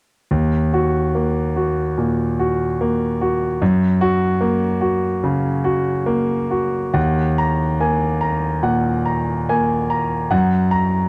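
A clear concert grand piano plays alone from 0.3 seconds, sitting up front in the mix with a smooth, vintage tone and a deep bass register that reaches from Eb2 to Bb5. This short cut from a longer neoclassical minimalist piece moves at 72 BPM in 4/4, yet the beats fall unevenly and the rubato gives it a loose, breathing feel. Set in Eb minor and tuned to A4 = 441 Hz, the harmony moves between Ebm and Gb, and a second section begins at 7.0 seconds that returns to the same pair of chords. Light reverb surrounds the instrument, and the production is dark and warm. The mood is wistful and reflective, and the excerpt ends at 11.1 seconds.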